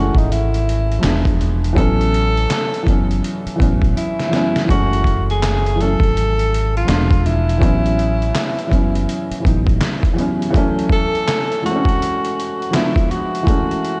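A breathy, subtone tenor saxophone with vibrato and scooped notes carries the delay-touched melody over a soft, felt-muted upright piano with a cassette-tape tinge, opening this melancholic, hazy lo-fi hip hop excerpt at 82 BPM in F# minor with a 16th-note swing, as a round, dark dub electric bass sits up front until 9.8 seconds and a compressed, pitched-down trip hop sampler kit with a thumpy kick, handclaps, hi-hat and gritty 12-bit character adds a fill from 4.0 seconds, all cycling through F#m9, E7b9 and A6 in a lightly reverberant, tape-colored mix.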